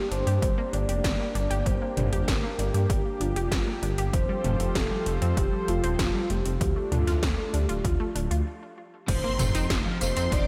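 This excerpt of moody, driving synthwave opens with a soft, octave-layered synth lead carrying the melody over a smooth analog pad that pumps in the background, both treated with chorus, and the lead adds tremolo and tape echo. Almost at once a dark, detuned saw bass arrives up front, deep and rumbling with tube saturation, alongside bright, round analog pluck arpeggios roughened by vintage sampler grit and delay. Eighties-style electronic drums bring a gated snare and toms, metallic hats, tambourine and crash, all overdriven and re-recorded in a small room, while a punchy, overdriven electronic kick joins at 0.4 seconds. The harmony moves from G minor through Fadd9 and D minor before a stop at 8.5 seconds. At 9.1 seconds the music lands on an F7sus4 chord as a shimmering vintage string machine adds a high violin line, a crunchy, double-tracked overdriven guitar riff sits in the background, and a very quiet electronic impact marks the new section.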